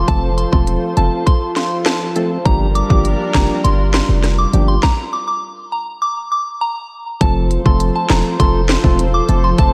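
Dancehall at 101 BPM in F major, summery and sunny, cut from a longer piece. A hard-hitting 808-style bass with a punchy, heavy sine body and a tight, sharp, crisp electronic island pop drum kit sit up front, while a hollow, dark percussive organ stab and a thick, detuned unison pad with sidechain pumping fill out the chords moving from F to Gm7. A soft, pure FM synth bell carries the melody through a diffuse ambient delay, all within a dreamy hall reverb with audible lossy compression artefacts and a stop at 4.8 s before the music returns at 7.2 s.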